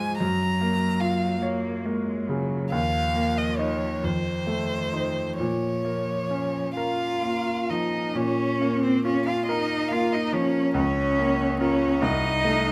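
In a flexible, rubato six-eight lilt, this solemn, melancholic slow movement for piano trio unfolds as a short fragment of a longer classical romantic work. A focused, close violin carries the melody with vibrato, a rich, smooth cello sings a second line beneath it, and a bright, brilliant grand piano with a vintage character and long sustain supplies the accompaniment, all three playing from start to finish. The detailed, intimate sound places the violin and piano up front within a moderate recital hall ambience.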